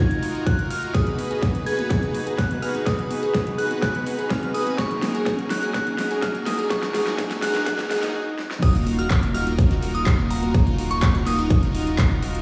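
Progressive house at 125 BPM in Eb minor, driving and dreamy, this excerpt opens with a build-up where a crystalline FM synth bell melody, a glassy wavetable pluck arpeggio under a filter sweep, and soft detuned supersaw stabs all pump against the sidechain, joined by a faint riser, a punchy overdriven electronic kick, and a big-room kit with a huge snare and metallic hats running a drum fill. After a brief stop, the drop arrives at 8.6 seconds, bringing in a deep, saturated sine sub bass and a very quiet, dark, dry soul kit with hi-hat and snare. The mix sits in a large, reverberant space with chorus, tape echo and digital delay on the synths, over chords moving from Ebmadd9 through B6 and Gbadd9.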